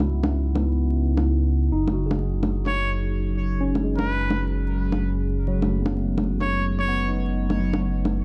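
Swung sixteenths at 128 BPM in 4/4 drive this wistful, melancholic future garage fragment, with produced electronic bongos carrying 12-bit sampler grit and a touch of studio ambience over a deep, rumbling detuned saw bass that sits saturated and up front. A barky, overdriven tine electric piano played through a combo amp moves between C#madd9 and F#madd9 with phaser, low-pass filter and analog delay, while a moody, full-bodied analog pad holds very quiet sustained chords with chorus beneath it. From 2.7 to 7.1 seconds a nasal, brilliant trumpet with straight mute plays a jazz-style solo line with grit and analog delay, all framed by a dark production with light reverb and vinyl crackle.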